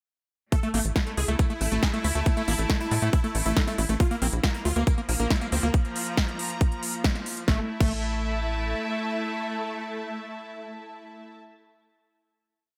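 Lightly reverberant digital ambience frames this driving, psychedelic trance piece at 138 BPM, where a tight, up-front electronic kick drum pounds four-on-the-floor under a big-room dance drum kit of punchy snare and crisp hats, a dark, galloping sequencer bass, a squelchy, overdriven acid bass line set in the background, a bright, detuned supersaw stab repeating its riff through phaser and delay, a morphing wavetable pad holding a high note, and a distant, biting symphonic string section slowly shifting chords. The stab, pad, acid bass and strings pump with sidechain during the drop, which runs until 7.5 s, after which the stab and strings sustain a final chord to about 11 s.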